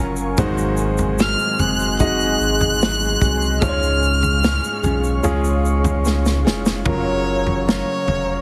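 Emotional and hopeful, this short slice of a pop ballad at 74 BPM in F# major sets a clear, long-sustaining concert grand piano, a glassy FM pad with ensemble chorus, background nylon-string guitar arpeggios and a round sine sub bass under a natural country drum kit and a grainy tube shaker, while a focused, bowed violin with vibrato carries the melody from 1.2 seconds, a drum fill at 6.0 seconds leads into an F#maj7 at 6.9 seconds, and the mix has a heavily compressed radio sound in a small room.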